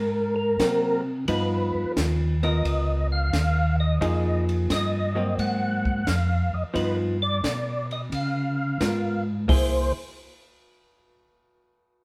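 Two round, slow-rotary tonewheel organs open this smoky, bluesy soul jazz organ trio at 88 BPM in C minor, one up front with a clean, percussive melody and the other carrying a mellow bass line, before a picked, compressed hollow-body electric guitar accompaniment and a dry cocktail drum kit with a high-tuned snare, punchy kick and dark cymbals join at 0.6 seconds, the band swinging through chords such as Ab9, G7b13 and Fm11 in a stone room's moderate reverb.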